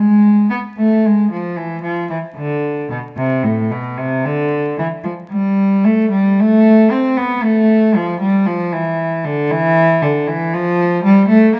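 A lone bowed cello opens, played by one player in period style with a nasal, reedy gut-string tone that sits up front yet sounds distant, unfolding an introspective, solemn baroque-style suite movement in a flexible, rubato triple metre. The single line stays in the instrument's low-to-middle register for the full 11.6 seconds of this fragment cut from a longer piece. A moderate stone-room reverb surrounds the playing, and a vinyl crackle lends it an aged patina.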